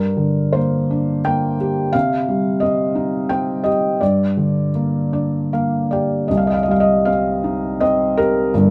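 Moody and cool, this short excerpt cut from a longer piece is lyrical solo classical piano in C minor, moving in 3/4 with a rubato feel that drifts between 74 and 91 BPM. A felt-muted upright piano carries everything on its own, spanning G1 to G5, with a soft, dark, intimate tone, thick felt and audible action noise. It sits up front in a moderate studio reverb, which lends a modest sense of room around the close, mellow sound. The harmony moves from Gm to Cm and back to Gm, and a piano fill from 4.7 to 6.3 seconds leads into a return of the opening material on Cm. The phrase restarts at 6.3 seconds and the clip ends at 8.7 seconds, still mid-thought.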